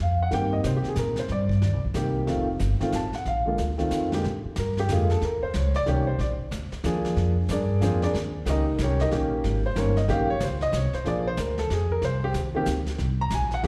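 A grand piano and woody pizzicato upright bass open this swinging, playful jazz piano trio in three, joined at 0.3 seconds by a vintage brush kit with a punchy kick, a rolled-off top and its own slapback echo, before the up-front warm piano, coloured by plate reverb and slapback echo, takes a solo from 4.2 seconds, all heard as a live gig through the venue's PA with recital hall reverb.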